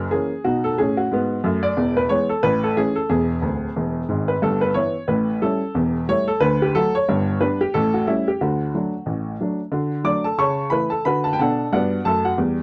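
Stride jazz on solo upright piano, playful and exuberant, swinging briskly at 181 BPM and settling into D major after 4.4 s in this short cut from a longer piece. The piano sounds woody and slightly detuned with a short sustain, spanning D1 to D6, and it drops in a fill from 3.4 to 4.4 s as the chords move from B7 through E and A toward D. The dry, close 1970s-style studio sound puts the instrument up front in a small booth, with a new section arriving at 9.7 s.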